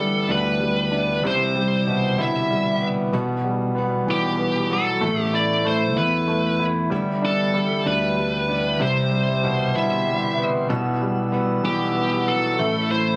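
Captured on a phone amid club ambience with light digital reverb, this excerpt from a tender, swaying six-eight pop ballad at 63 BPM sets a bright, high-gain distorted lead guitar melody up front over a clear, polished concert grand piano with audible action noise and long sustain, a very quiet clean electric guitar picking compressed arpeggios, and a round, punchy fretless bass, while a soft, flute-like tonewheel organ with slow rotary speaker enters in the background at 6.9 s as the G6, Cmaj7, Emadd9/B and Asus2 progression comes around again.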